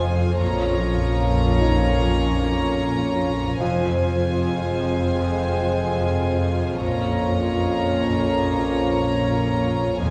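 Heard through the soft haze of a wet recital hall, this mysterious, eerie cinematic cue moves at a slow 75 BPM in a straight 4/4, its high end rolled off above 11.0 kHz. Two violin sections float a pure, sul tasto melody and second line high above, while a dark, woody viola section with vibrato sits in the background and a rich cello section and close, dark double basses anchor the low end. A French horn section with light vibrato and a vintage-toned trombone section hold sustained chords, and a concert harp rings out a fingerpicked riff in the distance. Beneath it all a swarming, detuned granular drone hums very quietly on F2, and a felt-muted upright piano adds boxy, intimate texture with audible action noise until 6.8 seconds. The harmony shifts from Bb minor to F minor and back, and at 10.0 seconds a round, soft-malleted timpani stroke lands up front as the fragment breaks off.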